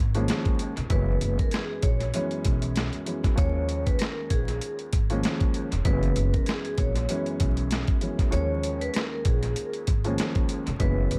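Through a small, echo-heavy room with vinyl crackle, this reflective yet tough boom-bap hip-hop excerpt in Eb phrygian moves at 97 BPM with a swung 16th-note feel, circling between Eb9sus4 and Gb9sus4 chords. A gritty, overdriven sampler-style drum kit sits up front with a thumpy kick and medium-tuned snare, joined by a woody pizzicato upright bass on gut strings and a dark, slightly detuned upright piano whose mellow tone carries audible action noise and analog delay. From 0.9 seconds a metallic, ringing vibraphone with fast motor vibrato plays the melody, and the kick drops out briefly between 8.3 and 8.9 seconds.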